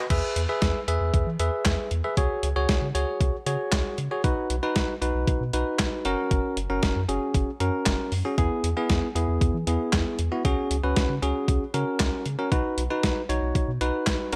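Wistful yet upbeat, this synth-pop excerpt moves at 116 BPM in a straight 4/4 and cycles through E, Dbsus4, Cb and Gb chords, tuned to A4 = 441 Hz. A bright, bell-like tine electric piano sits up front with the accompaniment, while a round, deep analog bass with a fast attack and a sustained, dark tone anchors the low end. A clean 12-bit drum machine sits up front with a thumpy kick, medium-tuned snare, handclaps, hi-hat and crash cymbal, its gated reverb and tape-tinged small-room character set within a light digital ambience.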